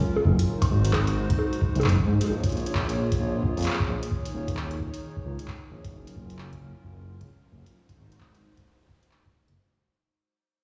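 Heard as if played through a big sound system in a bare stone room, this eerie, glitchy, swung IDM fragment fades out throughout as a hollow, flute-like pad with chorus holds soft chords over a rumbling, saturated detuned saw bass up front, while an analog drum machine scatters bongos, handclaps and metallic hi-hats through tape echo above a deep electronic kick that drops away at 9.3 seconds.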